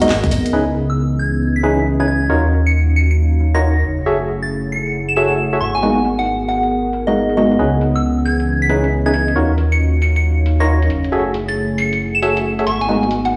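The excerpt opens with a brief jingle of tambourine in the background as a soft synth bell, a warm analog pad, a hollow organ stab, a warbly tape-like pad and a garage drum kit all begin together, with a dark detuned saw bass arriving at 0.1 seconds. This is a bouncy, late-night piece of two-step UK garage at 136 BPM in C# dorian, swung on the sixteenths, cycling through lush minor-ninth chords from G#m9 to C#m9, D#m9 and F#m9. Up front, the deep, rumbling bass beats with unison detuning, while the mellow organ stabs carry chorus, cassette tape colour and dub echo. The pure FM bell melody is gentle and decaying, treated with chorus, phaser and dub echo, floating high above the smooth, sidechain-pumped analog pad and the nostalgic, lo-fi tape pad with its long release and built-in reverb. The electronic, layered drum kit with its crash, handclaps and warm hats is low-pass filtered and re-recorded in a small room, and from 0.5 seconds a filter sweep moves across both the drums and the analog pad. 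A moderate plate reverb and large studio reverb, heard as if played on a big sound system in a bare room, give the whole mix a spacious, nocturnal depth.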